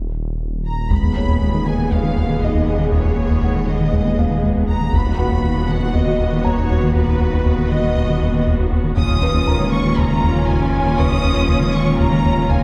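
A menacing, detuned saw bass swells up from the depths at 0.0 s, opening this brooding, relentless hybrid orchestral and electronic film cue at 119 BPM. From 0.9 s a round, nasal analog bass riff, a distant cello section, lush bowed violas and a mellow, harp-like synth pluck playing chorused arpeggios join in, while a vibrato-rich violin section carries the melody from just before. Short bursts of close, dry taiko with heavy sticks punctuate the chord changes, and a felt-muted upright piano with audible action noise and tape echo sits far in the background, all heard from further back in a spacious scoring stage.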